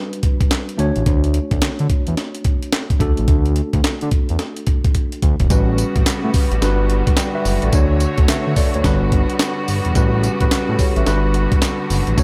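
A gritty, compressed breakbeat drum kit sits up front in this bouncy, slick new jack swing R&B piece, its pitched-up samples of thumpy kick, medium-tuned snare, handclaps, hi-hat and tambourine carrying a tape-warm, small-room grit over a swung groove. A worn, slightly out-of-tune tine electric piano plays chords through its built-in speakers from the start, joined at 0.8 seconds by a smooth, saturated synth bass whose sawtooth, square and triangle tones carry a ring-modulated edge. After a drum fill at 5.0 seconds, a veiled, con sordino string section enters at 5.5 seconds with soft-attack bowed chords and vibrato, all set in a digital ambience in this excerpt from a longer piece.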